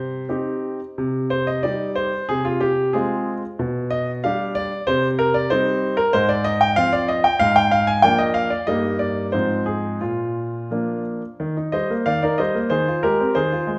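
A graceful, cheerful classical-period piano sonatina in 2/4, played with a rubato feel on a solo grand piano whose clear, natural tone sits up front and spans G2 to Ab5. The harmony moves from a minor home through chords like Fm/C and G/B, then turns toward a brighter major color from 6.1 s, settling on Eb as a new section begins at 11.4 s. A wet recital hall reverb surrounds the instrument in this short excerpt cut from a longer piece.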